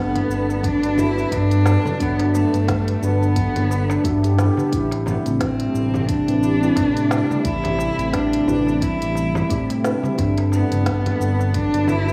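Hypnotic and meditative, this organic downtempo excerpt moves with a gently swung 16th-note feel over chords that shift from Gmaj7 to Am7 and back. A dark, woody cello carries the melody up front, bowed by one player with vibrato yet sounding distant, its lines trailed by analog delay. Beneath it, a smooth gliding synth bass with a fast attack and portamento pumps against the kick, while a warbling vintage pad with a slow attack and a deep, detuned chord stab with chorus and phaser sit in the background. A ringing stainless-steel handpan plays soft arpeggios with its own delay. A kit of congas, shaker, woody snare and smooth hats comes in at 0.2 seconds, followed by a crisp, close darbuka tapped very quietly by soft hands at 0.5 seconds and the electronic kick at 0.6 seconds, all set in a dreamy mix soaked in lush hall reverb.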